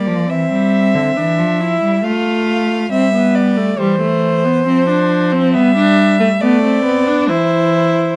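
A violin, viola and cello begin together at 0.0 seconds in this brief, elegant and lively passage from a baroque-style fugue, moving at 69 BPM in a straight 3/4 with tuning set to A4 = 442 Hz. The violin carries the melody between C5 and F5 with a smooth, even tone, vibrato and a silky top. Beneath it the viola supplies accompaniment from G3 to F4, bowed with a rich, steady sound and vibrato. The cello holds the bass between D3 and B3 with a focused, bowed tone, each instrument played by a single player placed up front. The harmony moves from C through F/A, C/G, Dm7/F and G before settling on C/E at 7.3 seconds. A small room adds moderate reverb to a dark, warm production, with a faint mains hum in the background.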